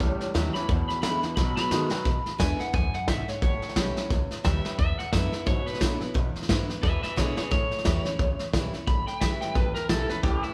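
Rollicking and retro, this rockabilly excerpt in E major swings at 176 BPM as a twangy, lo-fi electric lead with spring reverb takes a clean solo from 2.1 seconds over a full-bodied picked acoustic guitar, a woody gut-string upright bass, an up-front brush kit with a punchy kick, and a second slightly broken-up electric guitar that plays a low riff only until 2.0 seconds and returns at 10.2 seconds, all recorded live in one room.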